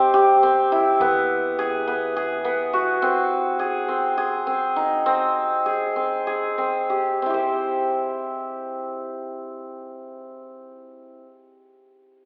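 Heard from further back in a reverberant recital hall and filtered to a thin telephone sound, this hopeful, shimmering contemporary instrumental passage, cut from a longer piece, moves in a straight 7/8 that slows between 3.0 and 7.2 seconds. Up front, a bright, ringing hammered dulcimer spins arpeggios until 11.2 seconds as the harmony shifts from C through E and A-flat before returning to C. Beneath it, a woody, thumpy pizzicato upright bass on gut strings sits in the background and drops out after 3.0 seconds.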